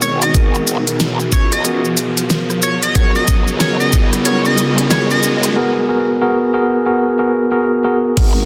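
A dense, heavily limited mix with plate-reverb ambience frames this funky, playful glitch hop build-up at 92 BPM with a swung 16th feel, where a mellow tine electric piano plays up-front stabs, a warbling lo-fi pad sustains nostalgic chords, and both sweep through a filter; a growling, saturated bass wobbles in the background, a pop drum kit brings a fat snare, crisp hats, rim clicks, shaker and crash, a knocking electronic kick punches from 0.3 to 4.1 seconds and returns briefly at 8.2 seconds, an edgy, tearing sync lead carries the melody until 5.3 seconds, and an electronic riser climbs as the harmony moves from G#m9 to C#m7.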